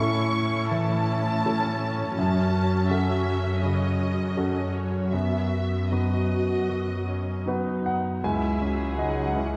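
In a free, rubato 4/4, this moving and hopeful cinematic orchestral fragment sets a veiled con sordino violin section singing the melody over a clear, intimate baby grand piano with audible action noise, lush muted violas and dark, soft-attack cellos, before a second, smooth-topped studio violin section and a double bass section join at 8.2 seconds, the ensemble heard from further back in a reverberant scoring stage.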